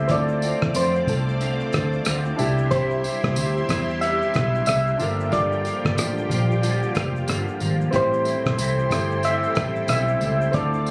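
Indie pop with a bedroom-pop haze, this laid-back, nostalgic clip moves at 92 BPM in 4/4 with a 16th-note swing, cut from a longer piece. Soft, round electric-piano-like synth keys carry the melody with a lush chorus and a gentle, warbling vintage tone, while a twangy, slightly broken-up electric guitar through a small old amp adds picked accompaniment with ensemble chorus and a warbly pitch drift. An intimate upright piano with woody character and audible action noise sits in the background, and a string machine voiced as cellos holds mellow sawtooth chords with a slow attack and a sub octave. Underneath, a foam-muted, punchy fingered electric bass sits up front, and from 0.1 seconds a cloth-damped, thuddy drum kit with a tight kick, hi-hat, rim click and shaker plays alongside a jingly, close tambourine. The chords move through Dm7, Cmaj7, Gm7 and Am7, and the mix carries light small-room ambience, club reverb and compression with the intimacy of a phone recording.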